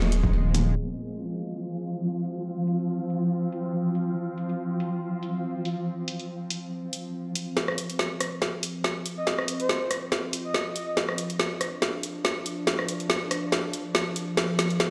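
This dark, meditative deep dubstep excerpt at 141 BPM, with a swung half-time feel, opens on a tense, string-like bowed drone, a brief rumbling burst of detuned saw bass, a quick hit of bright, high-tuned congas with dub echo, and a flickering, grainy texture, while an up-front deep house kit with a woody snare and dusky hats carries on throughout. At 7.6 s an overdriven, deep electronic kick sits in the background as the drums build with a fill and a filter sweep moves across the drone, and at 9.2 s a breathy, flute-like synth lead with chorus, tremolo and dub echo briefly surfaces. A lush hall reverb and the sound of a big sound system in a bare room shape the overall sound.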